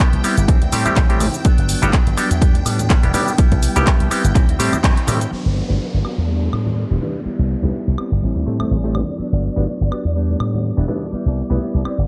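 A bright, punchy slap bass with an envelope filter sits up front in this sunny, feel-good filtered disco house excerpt, joined by a hollow, nasal clav through a combo amp, a twangy envelope-filtered electric guitar riff with 12-bit sampler grit, a swirling phased string machine in the background, and a tape-warm analog drum machine of cabasa, handclaps, hi-hat and woodblock over distant, ringing maracas and congas, while a punchy electronic kick drives the groove until 4.9 seconds, and from 5.3 seconds a filter sweep and a downlifter carry the pumping, sidechained mix over a repeating Am7–Gmaj7–Em7–Cmaj7 progression.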